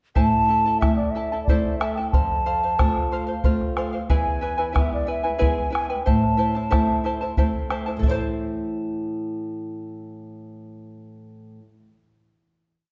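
A dark, warm production set in a wet recital hall gives this short Andean folk piece a soft, resonant glow. In A minor at 92 BPM in a straight 3/4, it feels wistful yet festive, moving through Am, F and E before settling back on Am. A mellow, airy large quena carries the melody with a straight tone, soft attack and rolled-off highs, stating hook-like motif phrases until about 7.3 seconds. Beneath it, the charango shimmers with its double strings, some octave-doubled, mixing fingerpicking with rhythmic strumming of open chord shapes, while the small, up-front nylon-string guitar plays an oompah figure of bass notes and chords. The round, close and dry bombo keeps an evenly spread pattern until about 8.3 seconds, while from about 8 seconds the strings ring out on a final chord that closes the piece near 11.8 seconds.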